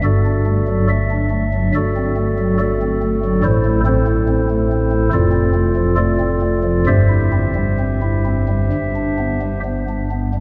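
Classical chorale-style music for solo pipe organ on a stopped flute stop, reverent and serene, moving at a rubato 65-71 BPM in 4/4 and settling into C major from 3.4 s. The organ sits up front with a soft, hollow, mellow tone, a touch of chiff and baroque voicing, spanning F1 to E5 as the harmony passes from D over G through A minor and D minor seventh to C over G and G. A dark production and a long, wet cathedral reverb surround this short passage, which is cut from a longer piece.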